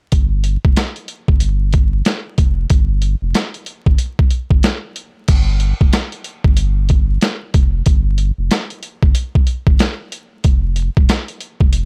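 A compressed, pitched-down boom-bap drum kit with a thumpy kick, medium-tuned snare, hi-hat and crash sits up front in this moody, reflective hip-hop excerpt, swung on the sixteenths over a deep, round sine sub bass with transformer saturation, all captured in a dry, gritty hardware sound dusted with vinyl crackle.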